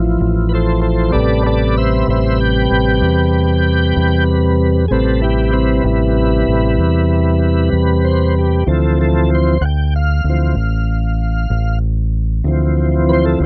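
A slow 12/8 blues pulse at 64 dotted-quarter beats per minute drives this brief, brooding excerpt in A minor, carrying a soulful weight throughout its 13.5 seconds. A tonewheel organ holds sustained chords up front, its smooth, clean voice colored by chorus vibrato and a slow rotary speaker, and it carries the solo role across the whole passage. Beneath it, a fingered electric bass sits close and round, its dark, amped tone anchoring the low end in a tight register. The harmony opens on a rootless Dm7, settles onto Am7 at 1.1 seconds, and returns to Dm7 at 8.7 seconds. The sound is dry and intimate, with little reverb, in the manner of a close 1970s studio recording.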